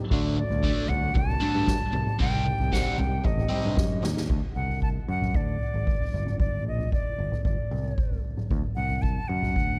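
A concert flute carries the melody from 0.4 seconds with airy vibrato and a crisp attack, drifting through analog delay over this trippy, mysterious psychedelic rock excerpt at 114 BPM in a straight 4/4. Beneath it, a soft-mallet drum kit with a boomy kick sits up front, joined by a round, punchy overdriven picked bass. A double-tracked fuzz guitar plays a riff through phaser, very quiet congas add percussion, and a fat tonewheel organ on slow rotary speaker holds sustained chords in the background, all until a drum fill from 3.8 to 4.3 seconds. After that point the flute, bass and drums carry on alone in a small room, moving from D through G5 and back to D.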